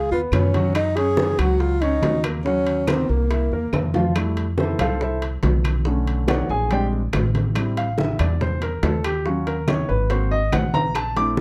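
Afro-Cuban jazz, danceable and sophisticated, in which a breathy, whispered tenor saxophone carries the melody until 3.9 seconds before a smooth, vintage-toned grand piano takes a solo from 4.2 seconds over growly pizzicato upright bass, damped low-tuned congas, tight high-tuned bongos, ringing metal-shelled timbales and woody claves, with drum fills from 3.7 to 4.2 seconds and at 10.7 seconds in a dark production with light reverb.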